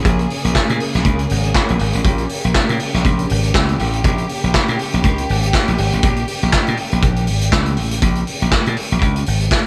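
A lightly swung sixteenth-note groove in four drives this danceable, glamorous disco cut, taken from a longer piece and resting on a single minor seventh chord throughout. The vintage drum kit sits up front with a punchy kick, a medium-tuned snare, hi-hat and handclaps, its acoustic sound saturated and gritty with a rolled-off top. Alongside it from 0.1 seconds, an electric slap bass cuts through, bright, direct and amped, and just as forward in the mix. Behind them, a studio string section holds lush sustained chords from the very start, its bowed ensemble tone clear and focused with vibrato but placed at a distance. Light reverb gives the feel of a band playing live together in one room, and the strings carry on to the close at 9.7 seconds.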